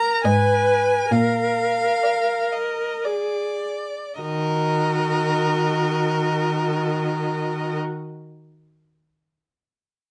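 Classical string quartet excerpt, a slow, elegiac and solemn romantic movement in 3/4 and Eb minor with a rubato feel around 50-71 BPM that slows through its first 4.2 seconds, where a clear, focused first violin carries the melody over a rich second violin line, an expressive viola accompaniment with soft attacks and portamento, and an intense cello bass with a smooth top entering at 0.2 s, all bowed with vibrato and caught by close, detailed microphones with little reverb as the harmony moves from Abm and Bb to Ebm at 4.2 s.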